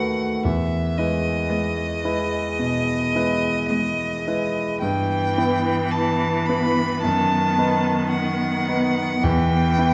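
At a slow 54 BPM in 4/4, the rubato pulse gives this slow romantic movement for piano quartet a yearning, elegiac pull across its 9.9 seconds, cut from a longer piece. It opens in E major and turns to E minor at 4.8 s, moving through E, Em/G and B7/F# before settling on Em. The violin carries the melody up front with a clear, focused, close tone and vibrato, while the cello's smooth, even second line sounds more distant. The concert grand piano, also up front, plays the accompaniment with a natural sound, deep bass and long sustain, and the viola holds a single rich, soft-attacked note in the background with expressive vibrato and portamento. All four instruments play throughout, placed in a recital hall with a lingering reverb of about 1.5 seconds.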